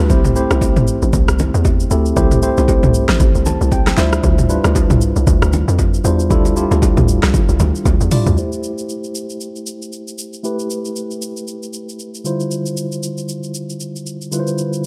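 Amapiano with a soulful, relaxed mood, this excerpt rides a swung sixteenth-note feel over a dark, warm production with little reverb. A mellow, clean tine electric piano sits up front through the whole passage, moving between C6 and Dm11 chords behind a low-pass filter, and it slips in a short fill at 3.2 seconds. Underneath, a hollow, bouncy log drum bass with a fast attack and decaying tail carries the low end during the drop, stopping at 8.4 seconds. A layered electronic deep house kit with a punchy kick, fat snare, hi-hat, rim click, shaker and toms stays prominent throughout and rolls into a fill just before the second section. Bright acoustic congas and bongos tap away in the background until 8.0 seconds, after which the electric piano carries a filter sweep to the close over the drums.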